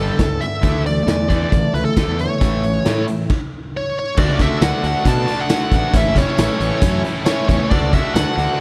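Up front, a raw garage drum kit with a punchy kick, medium-tuned snare, hi-hat, crash and tambourine pounds through a bright stone room that pumps and saturates, driving this swaggering classic rock excerpt at 136 BPM in D major. A bluesy distorted lead guitar carries the melody over picked cranked stack and distorted electric guitar riffs set in the background, a growly fuzz fingered bass, and a very quiet, boxy, shimmering plugged-in twelve-string acoustic with finger squeak, moving from Gadd9 through Dsus2 and A to D. After a stop from 3.3 to 4.2 s, a second, double-tracked cranked stack guitar enters very quietly at 4.2 s, all in a dry, close sound.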